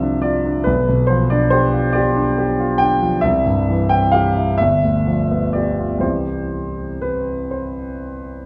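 In an unhurried rubato 6/8, this serene, tender romantic nocturne fragment sets a solo grand piano up front with a warm, natural, long-sustaining tone across the full 8.5 seconds, moving through Dm7/C, G7/B, C and G7 before settling on C, all inside a dark production and the wet bloom of a recital hall.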